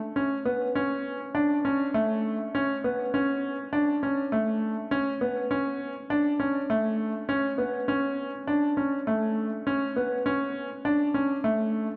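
A straight 4/4 pulse at 101 BPM underpins this short electronica excerpt, which carries a hopeful, luminous mood. A clear concert grand piano plays solo from 0.2 to 11.9 seconds, staying within a narrow register from A3 to D4. Its tone is worn yet present, with a deep bass weight and a short sustain, and it sits up front in the mix. An analog delay trails the piano's notes, while a wet plate reverb with a 3.2-second decay soaks the whole dreamy mix. The result feels luminous and glowing, like a fragment lifted from a longer piece.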